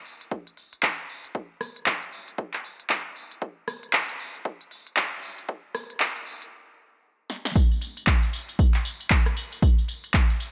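House groove at 116 BPM with a 60% swing on the sixteenths, smooth and late-night, where a punchy, up-front electronic kick joins a deep house kit of handclaps, smooth hi-hats, rim click, punchy snare and tambourine, both layered and re-recorded in a small room under light reverb, building until a stop at 6.5 seconds and a fill at 7.3 seconds lead into the drop at 7.6 seconds in this cut from a longer piece.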